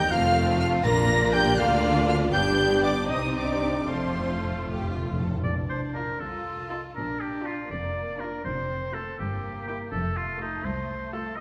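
Graceful and cheerful, this short cut from a quick classical-period orchestral movement in a rubato 6/8 sets a lush, vibrato-rich violin section on the melody, while a clear, distant oboe, a pure, soft-attack flute and a smooth second violin section weave supporting lines. Rich violas fill the middle, mellow French horns hold tight, roomy chords until 4.7 s, and focused cellos join double basses with portamento on the bass line. Timpani played with medium mallets on calf heads add a fill from 3.9 s, and the whole orchestra sits in a wet concert-hall reverb.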